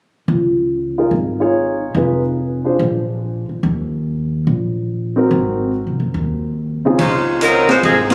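A mellow saxophone section with vibrato takes the melody at 7.4 seconds in this swinging, brassy big band swing excerpt, after a woody pizzicato upright bass and an intimate grand piano with audible action noise carry the opening, and an open jazz drum kit with dark cymbals and a boomy kick arrives at 7.0 seconds alongside brief, lightly vibrato trumpet section stabs, the sound heard through concert-hall reverb as captured on a phone in the room.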